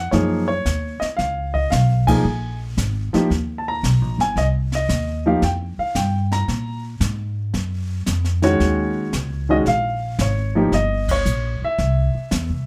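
A warm grand piano carries the melody up front in this smoky, swinging jazz piano trio excerpt, its intimate, natural tone ranging from Eb3 to Bb5 with the soft clatter of its action audible beneath the notes. An upright bass plays pizzicato alongside it from the start, woody and thumpy, with a dark, steel-string weight sitting close in the mix. A jazz brush drum kit enters at 0.1 seconds, played with brushes on a high-tuned snare, dark cymbals, hi-hat and a boomy kick, its airy, polished sound set back behind the other two. The tempo is 113 BPM in 4/4 with a swing feel on the eighth notes, and the harmony moves through rich chords such as Gbmaj7, Cmadd11, Ebm11 and Gdim before landing on C. The full band hits accents together at 2.0 and 11.0 seconds, and a moderate club reverb gives the whole fragment the feel of a small, late-night room.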